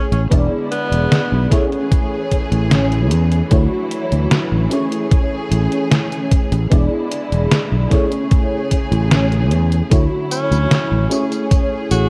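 Faded and nostalgic, this vaporwave excerpt drifts at 75 BPM in A major, cycling through lazy E7, Amaj7 and Dmaj9 chords with a lush, dreamy FM electric piano, layered with a soft pad and treated with ensemble chorus and tape echo, alongside a rich bowed string section with smooth vibrato. A growly, punchy fretless bass sits up front with a thumpy electronic kick and a detuned 8-bit drum machine supplying hi-hat, snare and tambourine, all drums re-recorded in a large room. A bright alto saxophone with scooped notes and tape echo appears only briefly, at the very start and again from 10.3 seconds, over a cassette-tape sound with light reverb and digital ambience.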